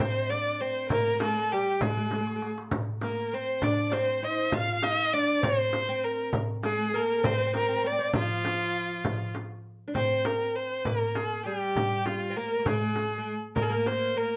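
Arabic maqam ensemble music in a passionate, warm mood, moving at 66 BPM in a straight 6/8. A single violin carries the melody up front, bowed with vibrato and a focused, close tone, while a very quiet, smooth studio violin section traces a second line until 9.3 seconds, and a mellow, woody fretless oud with double strings adds its own plucked line beneath. A clay-shelled darbuka played with soft hands and a small, bright, dry frame drum keep the pulse, with a drum fill at 2.1 seconds, all set in moderate studio reverb in this excerpt cut from a longer piece.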